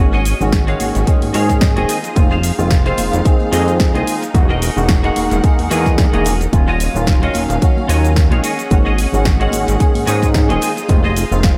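Barky tine electric piano accompaniment with chorus and dub echo opens this sleek, cosmic nu-disco excerpt at 110 BPM, joined at once by bowed chamber strings pumping softly in the background, a bright, twangy clean guitar riff and an up-front, glossy pulse-wave synth bass with tube saturation and sidechain pumping. Ringing tambourine and congas enter at 0.1 seconds, a house kit of hi-hat, shaker and punchy snare at 0.3 seconds, and a layered electronic kick sits at the front from 0.5 seconds, all over a lightly swung sixteenth-note feel. The echo-heavy mix, with light digital ambience, moves through Ab7sus4, Fm7, Emaj9#11 and Ebm9 before returning to Ab7sus4.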